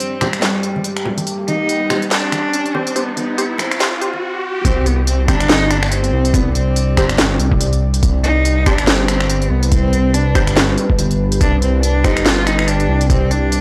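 A swung, half-time garage groove of finger snaps, crisp hats and a cracking snare drives this brooding, heavy deep dubstep excerpt, where a smooth bowed cello melody with dub echo floats over a moody ambient pad and muted, chorused dub chord stabs, while damped congas and an electronic riser carry the build-up into a brief stop at 4.2 seconds and then the drop at 4.6 seconds, when a rumbling detuned saw bass and a thumpy, pitched-down kick arrive in a gritty, crackling recording.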